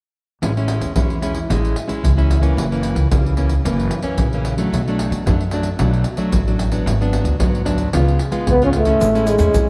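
A playful, sunny blend of samba and choro in A major, this short excerpt moves at 112 BPM in a straight 4/4 feel. From 0.4 seconds a fingerpicked nylon-string guitar sits up front with a classical touch, while a woody, gut-strung upright bass plucks dark, thumpy lows beneath it. The percussion of deep surdo, pandeiro and egg shaker is played with soft hands and sounds close and acoustic, as if in a small room. The harmony moves from Amaj7 through F#7, Bm7, G#m7b5 and C#7 before landing back on Amaj7 at 9.0 seconds. At 8.5 seconds a breathy trombone enters as the solo melody, mellow and whispered with light vibrato and a soft attack, intimate in a jazz style yet carrying a roomy, distant air. A moderate echo-chamber reverb lends the recording a gentle sense of space.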